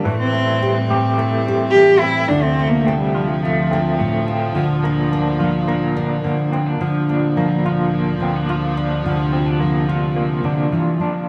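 A bowed cello opens this wistful, melancholic acoustic folk piece with a solo line, its tone biting yet smooth on top with light vibrato, until it falls silent at 4.1 seconds. Around it, a fingerpicked nylon-string guitar supplies full-bodied classical accompaniment up front, while an electric guitar through a small old amp plays dark, slightly broken-up arpeggios with tremolo and a compressed, lo-fi edge. Beneath them, a studio string section holds sustained chords with a soft attack and a pure, floating quality. The harmony moves from Am7 to Dm7 and then Bb/D at a straight 107 BPM in 4/4. A moderate studio reverb gives the ensemble a sense of space, and the music shifts into a new section at 6.8 seconds in this short cut from a longer piece.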